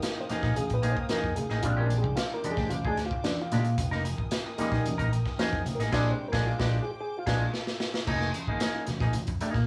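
A gritty, saturated breakbeat kit and an overdriven auto-wah clav soloing in nasal, hollow stabs open this driving, sly funk excerpt at 112 BPM in F dorian, over a twangy, scooped clean electric guitar, a distant, reedy string section holding dark sustained chords, low-tuned congas in the background from 0.2 seconds and a round, amped fingered bass from 0.3 seconds, with a band accent and drum fill leading to a switch at 8.1 seconds, where the clav and strings drop out for a brief closing passage on Fm7.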